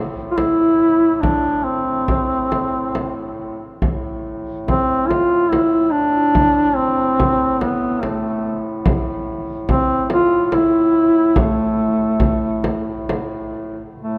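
A punchy, vibrato-laden duduk drone on A2 sits up front from 0.0 s, opening this mournful, longing Caucasian folk lament in A minor, with a second, vintage-toned duduk entering at 0.3 s to carry a melody of scooped notes between A3 and F4, while a deep, compressed and saturated frame drum sounds until 13.3 s under a rubato 3/4 feel at 71 BPM, the whole fragment of a longer piece set in moderate cathedral reverb.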